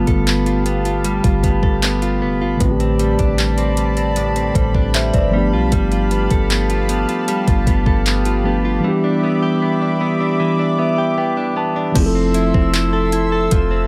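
Longing and sensual, this short contemporary R&B excerpt moves at a slow 77 BPM in straight 4/4, with a mellow tine electric piano playing chords that pass through G9, Am11 and Em7 before a fill at 10.4 seconds leads to an Fmaj7 at 12.0 seconds. A shimmering, chorused pulse-width pad sustains chords above, while a clean, direct-recorded electric guitar picks compressed arpeggios through a digital delay. Underneath, a deep, round 808-style bass and an up-front electronic drum kit with a knocking kick, metallic hi-hats, handclaps and crash cymbal sit in a dry, close mix.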